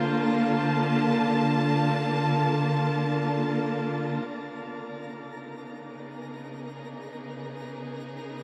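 Drenched in a long, wet shimmer reverb, this serene ambient fragment in free time floats on a bowed studio string section that sits up front, holding focused, smooth-topped chords with vibrato from a Bbmaj7 that gives way to B69 at 4.3 seconds. A clean, picked electric guitar arpeggiates just beneath hearing and falls silent at 1.8 seconds. A very quiet, bright granular texture twinkles and sparkles with an octave-up shimmer, soft attacks and long releases throughout.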